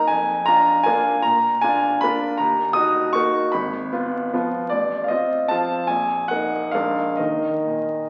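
The sound is that of a very old 78 rpm record, with vinyl crackle over a wet recital hall reverb that lets each chord hang for about 1.6 seconds. A solo baby grand piano plays a classical waltz in 3/4 in E-flat minor, its tempo moving freely between 122 and 172 BPM with a rubato feel. The piano sits up front, clear and intimate, with audible action noise and a long, natural sustain, ranging from Ab1 up to Eb6. The harmony opens on a Bb7 over F, passes through E-flat minor, a diminished chord and F7, then returns to Bb7 before landing on a bare Eb5 at 7.2 seconds. The mood is elegant and playful, and this 8.1-second passage is cut from a longer piece.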